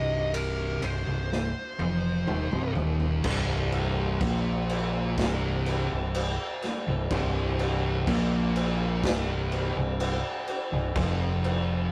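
A rough, dry rehearsal-room recording of hypnotic, sludgy stoner and doom metal cut from a longer piece, where a compressed, up-front fuzz lead guitar carries a brief melody until 2.7 s over a thick, double-tracked fuzz guitar riff and a growling, bright, overdriven fingered bass, while a saturated, gritty garage drum kit with a punchy kick and a pumping small-room sound enters at 0.3 s and plays a fill from 1.3 s as the harmony moves from Cm to Bbsus2/C and finally F5.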